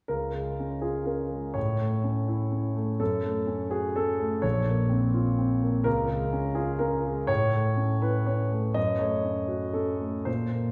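Neoclassical minimalist piano in Db major, hopeful and tender, with a solo concert grand playing from 0.1 to 10.7 seconds at 125 BPM in a rubato 3/4, its warm tone and deep bass spanning Bb1 to Eb5 as it moves through Db6, A, Gbm and Bbmadd9, all set in a wet recital hall reverb heard from further back in the room in this short fragment of a longer piece.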